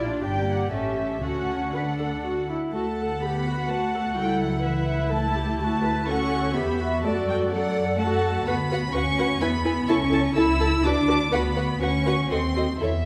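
A wet concert-hall reverb with a 1.8-second decay surrounds this spirited, cheerful classical-period movement for string orchestra, a short cut from a longer piece in D major and 3/4 at a quick 125 BPM. Two intimate violin sections carry the melody and a higher second line with light vibrato and soft, sul tasto bowing, while the warm violas fill in the accompaniment beneath them. Below, woody cellos and a dark, close double bass section placed up front share the bass, as the harmony moves from G minor through A7 to D and reaches a D#dim7 near 12.3 seconds.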